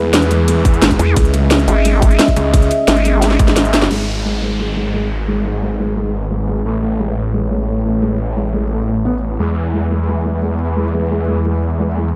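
A snarling distorted saw bass sits up front through this aggressive, mechanical slice of dark technical drum and bass at 175 BPM, its growling, saturated tone pumping against the sidechain. From 1.0 to 3.4 seconds a vowel-sweep wobble bass joins it with a nasal, resonant formant character. Beneath them, a dark analog pad holds sustained chords with chorus, while a felt-muted upright piano plays boxy, intimate arpeggios through a low-pass filter and delay. The opening drop runs to 3.9 seconds, with a drum-and-bass kit of cracking snare and crisp hats and a tight electronic kick, a drum fill, the kick dropping out, and a band accent at 3.8 seconds. From 3.9 seconds a downlifter slides in, the drums fall away at 4.0 seconds, and filter sweeps move across the pad and piano as the chords shift from G#m through Aadd9 back to E. Light reverb gives the mix a digital ambience, and the clip is cut from a longer piece.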